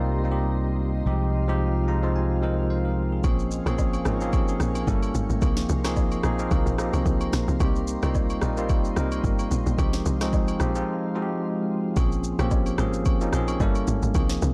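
Hypnotic and soulful, this amapiano excerpt in Bb dorian at 110 BPM with a gentle 16th-note swing opens on a bright, bell-like tine electric piano (which plays a fill from 1.6 to 3.2 seconds) over a glassy, ethereal FM pad with chorus, reverb and sidechain pumping and a round, amped fingered electric bass. At 3.2 seconds a tight, punchy log drum bass replaces the fingered bass, joined by an electronic afro-pop kit with deep kick, sharp snare, rim click and shaker, and by background agogo bells and woodblock. The music moves through chords like Cm7, Bbm7 and Ab69 to a break and a drop at 12.0 seconds in a dark, dry production.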